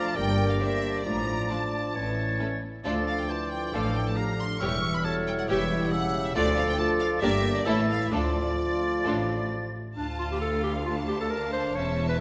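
Classical-period symphonic music in D minor moves at a quick 135 BPM in 4/4 with a rubato feel and a stormy, urgent mood. A clear, focused violin section carries the high melody over a lush second violin line, while oboe, hollow silver flute and close-miked clarinet weave second lines, mellow bassoon and smooth violas accompany, a tight French horn section holds background chords, and rich cellos and double basses anchor the bass. Oboe, flute, bassoon and horns stop at 9.7 s, leaving strings and clarinet to carry the new section from 10.0 s, heard in a wet concert hall.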